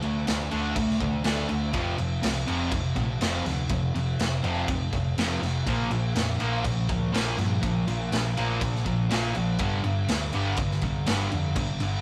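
A bright, double-tracked fuzz guitar riff sits up front, compressed and distorted over D5, F5, Bb5 and G5 power chords, in this raw, gritty garage rock excerpt at 122 BPM in straight 4/4, alongside a dark, round hollow-body short-scale bass with overdrive and a saturated acoustic kit with a boomy kick, medium-tuned snare, crash cymbal and rolled-off top pumping in a small room, all captured as a rough rehearsal-room recording with light reverb and warm saturation.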